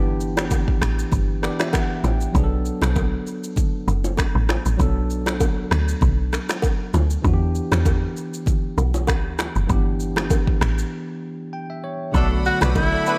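A 98 BPM groove in 4/4 with a light swing on the sixteenths drives this mellow, sultry afrobeats excerpt in B minor. Up front, a woody, punchy log drum bass anchors the low end, while an electronic afro-pop kit supplies a deep kick, finger snaps, rim clicks and shaker, and small-room bongos and congas add acoustic color beneath. A bell-like tine electric piano, clean and lightly chorused, carries the chords through G6, Bm7 and Em7 and plays fills, the second of them running through a break that begins at 10.9 seconds. At 12.1 seconds a new section opens: a distant, roomy horn section with octave doubling and analog delay takes a second line, and a lush, bowed string section holds bright sustained chords above it. A breathy, whispered tenor saxophone enters at 12.5 seconds with scooped notes and vibrato, intimate and close, just before the passage is cut off.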